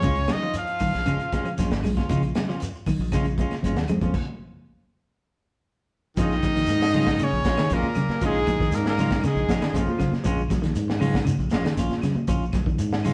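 Recorded as a band playing live in one stone room, this funky, driving afrobeat excerpt carries a wet reverb around its players. A crunchy breakbeat drum kit sits at the centre, saturated and gritty with a punchy kick, a high-tuned snare and dark cymbals. Fingered electric bass anchors the groove, while two clean, picked electric guitars fill in arpeggios and stabs over a Bbm7 chord. Shekere and ringing, hard-handed congas stay in the background, with faint woody claves joining just after the start. A bright, up-front trumpet carries the melody over raspy, growling tenor and baritone saxophones, all three playing briefly until 1.5 seconds and returning at 6.2 seconds after a stop that begins at 4.1 seconds.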